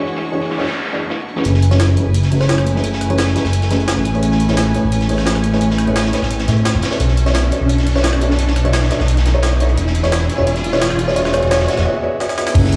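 Melancholic and dreamy, this excerpt of liquid drum and bass at 173 BPM opens with a soft, felt-muted upright piano, its action noise audible through a low-pass filter and digital delay, over bright, intense strings held in the background with sidechain pumping, a saturated breakbeat kit with a rolled-off top entering at 0.1 s, and a noise sweep, as the chords move from E13 through F#m11, Amaj9 and Bm11. At 1.5 s a deep, rumbling detuned saw bass sits up front, and a second gritty kit joins the breakbeat: a compressed, pitched-up jungle sampler kit with crash, rim clicks and snare. From 1.7 s a sparkling, bell-like FM electric piano adds a chorused, phased melody on C#5 with tape echo. A riser builds from 5.5 s to a short break, a drum fill and a knocking electronic kick at 12.6 s, all heard through the echo of a bare stone room.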